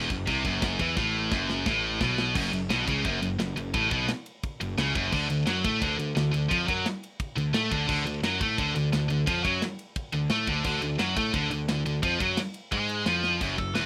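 Driven by a straight 4/4 pulse, this dark, heavy metal fragment from a longer piece pairs a scooped, up-front high-gain guitar riff with a second distorted guitar sitting in the background, both anchored by a growly, fuzzed-out picked bass and a tight acoustic kit with bright cymbals and a tight kick. The drums throw in a fill between 1.0 and 2.4 seconds and another at 13.2, while the harmony moves from F#m to a D5 power chord at 5.1 seconds. At 13.6 seconds a nasal lead guitar with a parked wah slips in for a brief phrase, all captured in a dry, rough home-demo mix.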